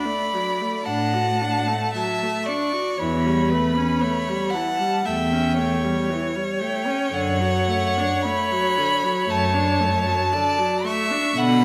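A distant, rich first violin sings a yearning melody high above a close, clear second violin, a focused viola and a clear cello that enters at 0.9 seconds, all bowed with vibrato in this solemn, rubato excerpt from a slow romantic string quartet movement in D major at 58 BPM, moving from D through A7/E to D/F# in a reverberant recital hall.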